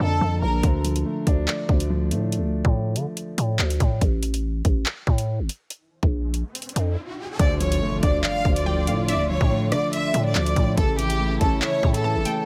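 Menacing, ominous drill hip hop at 142 BPM in a half-time feel, set in D harmonic minor, opens with a rich, vibrato-laden violin section, a dark, mellow grand piano with audible action noise and a growling, buzzy 808-style bass before an up-front drill kit of hard-clipped kick, metallic hi-hats, handclaps and rim clicks joins to drive the break from 0.6 seconds. An electronic riser and impact bridge into the second section at 7.4 seconds, where the violins return with delay over the piano, a softly bowed symphonic string section sustains chords in the background, and a glassy, detuned wavetable pluck with chorus and delay adds a crystalline second line from 8.2 seconds. The sound is dry, moving through Dm toward A in this cut from a longer piece.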